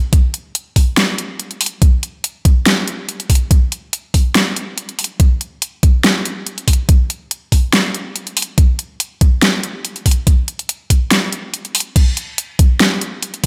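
An electronic kick drum is the loudest part of this heavy, aggressive dubstep excerpt, its knocking, overdriven hits layered and placed up front from 0.1 seconds to the close at 13.5 seconds. Alongside it runs a produced dubstep drum kit of crash cymbal, hi-hat and a huge snare, also pushed forward and given its own overdrive. The groove sits at 142 BPM in 4/4 with a half-time feel, so the pulse lands heavily while the tempo stays brisk. Both drum parts carry a studio reverb, and a light digital ambience surrounds the mix. Cut from a longer piece, the passage holds a single section from start to finish, built entirely on percussion.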